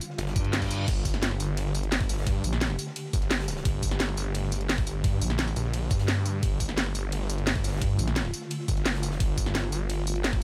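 The snarling distorted saw bass anchors this tense, aggressive slice of dark technical drum and bass, its detuned unison sawtooth tone sitting up front with tube-saturated grit and sidechain pumping from 0.2 seconds onward. A growling FM bass adds thick, fast-attack bursts, first from 0.4 to 2.8 seconds and then in brief stabs later on. Driving the straight 4/4 groove, a produced drum kit with a cracking snare, bright hats, ride, crash and tambourine plays from the start, joined at 0.4 seconds by a knocking electronic kick, while a very quiet, gritty breakbeat kit with a dark, rolled-off top sits underneath. Behind it all, a swarming, evolving drone holds sustained chords with a slow attack, granular texture and its own reverb, pumping mellowly in the background. An electronic reverse cymbal sweeps in at 0.3 seconds, and the overall mix stays dry and close, cut from a longer piece.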